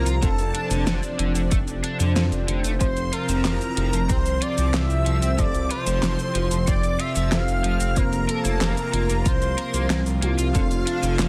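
A romantic, uplifting synthwave excerpt in F major at 93 BPM opens with a smooth, gliding sawtooth lead singing the melody with vibrato over a deep, rumbling detuned saw bass, a lush chorused pad pumping in the background, a shimmering vintage string machine, a crunchy overdriven guitar riff and dreamy phased FM electric-piano stabs, joined at 0.1 s by a pop kit with a fat snare, metallic hats, handclaps and shaker and at 0.2 s by a punchy electronic kick, all drifting through Dm7/F, Fmaj7 and Bbsus2/F in a dense, heavily limited mix.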